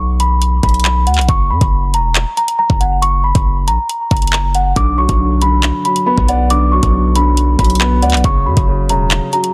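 A dense, heavily limited modern master with little reverb gives this short drill cut a dry, close and cold character. Set at 138 BPM in a half-time 4/4 feel in B harmonic minor, the ominous piece opens on a bell-like celesta melody between F#5 and D6, its soft felt hammers lending a delicate, sweet tone that trails into tape echo. Up front beside it, a punchy, heavy 808-style bass with a sine body, a noise layer and a fast, decaying attack anchors the low end. The electronic drill kit, also prominent, brings a knocking kick, bright hi-hats and handclaps, all pushed through overdrive. The harmony moves to F# and then Bm, where a dark, smooth baby grand piano enters at 4.8 seconds with vintage, mellow accompaniment beneath the celesta before the chords return to F# near the close of this section taken from a longer track.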